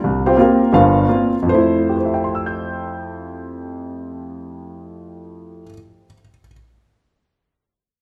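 A large studio's reverb gives this short jazz fragment a lush, roomy tail. A solo concert grand piano sits up front and sounds intimate and natural, with deep bass and the soft clatter of its action audible. The playing has a relaxed swing feel in 4/4 and spans the keyboard from the low bass to the upper register. The opening slows as it lingers on a C7sus4 chord, then settles onto Fmaj7 at 1.5 seconds. The piano carries on alone until it stops at 6.5 seconds, leaving a warm, unhurried mood.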